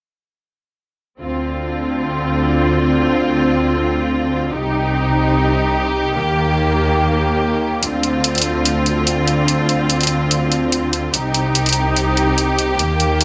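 Heavy wobble dubstep in D phrygian, this cut from a longer piece sets a menacing, heavy mood at 145 BPM in 4/4, with a half-time feel and a light swing on the sixteenths. A clear symphonic string section carries sustained bowed chords from 1.2 seconds, sitting up front with light vibrato, an intense ensemble tone and a smooth top softened by a low-pass filter, spanning C2 to G4. The harmony moves from Dm7 through Cm and Eb before returning to Dm7 and Cm. At 7.8 seconds an electronic hi-hat enters, layered and produced, placed up front with studio reverb, and both parts play through to 13.2 seconds. A moderate, lush hall reverb with a small room ambience surrounds the sound.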